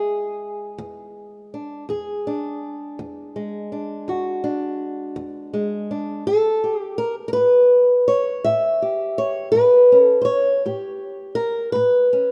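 A rolling 12/8 pulse at 55 BPM, felt straight, drives this rollicking, gritty acoustic country blues fragment in E mixolydian, moving from E7 to A7 at 6.3 seconds. A solo fingerpicked old ladder-braced acoustic guitar carries the whole 12.3 seconds from E2 to E5, sitting up front with a dark, woody, boxy tone and the dull bite of old strings. A moderate, lush hall reverb surrounds it, and the rough home-demo mix gives the cut a casual, unpolished feel.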